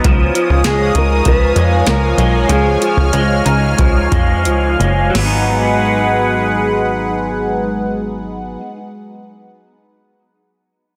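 Dream pop in G# dorian at 85-100 BPM, hazy and ethereal, this fragment slows over its opening stretch as a swirling, detuned analog pad with phaser and chorus holds sustained chords up front, moving from C#add9 to G#m7. A slightly broken-up electric guitar through a small old amp picks lo-fi arpeggios through ensemble chorus and tape echo, while a punchy, funky analog bass with a fast filter pluck sits prominently alongside a booming drum machine of deep kick, tonal snare, metallic hats and crash that drops out at 5.3 seconds. Between 0.7 and 4.4 seconds a dark, clean, fingered electric guitar carries the melody through spring reverb and tape echo, all set in a moderate plate reverb under a dense, heavily limited modern master.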